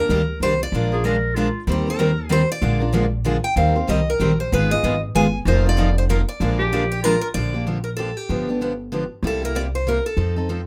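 A rough home-demo mix with a moderate studio room carries this charming, lively snippet of jazz manouche at 190 BPM in a swung 3/4, starting in Eb major and moving to Bb major at 7.3 s. A boxy, up-front parlour guitar with finger squeak picks the melody over a warm dreadnought guitar, a full-bodied jumbo guitar that picks accompaniment until 7.1 s, and a woody, thumpy upright bass plucked on gut strings. A punchy, vintage-toned clarinet with light vibrato adds brief forceful second-line phrases, first at 0.9 s.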